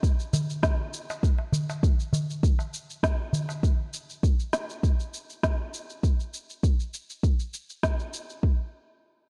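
A deep, layered electronic kick drum sits up front from the very start, joined at once by an electronic shaker and a woody, tape-tinged snare, both carrying a small room ambience. This is organic downtempo at 100 BPM in 4/4, with a gentle 53% swing on the sixteenths that gives the groove a loose, hypnotic sway. At 0.3 seconds a darbuka enters close and up front, its clay shell and natural skin producing a small, high, acoustic tone played with soft hands, and it drops out at 3.6 seconds. The kick and the shaker-and-snare carry on until around 8.4 to 8.6 seconds, keeping the short passage steady and mystical. The production is dark and warm, with light reverb and an intimate room sound, and the clip is cut from a longer piece.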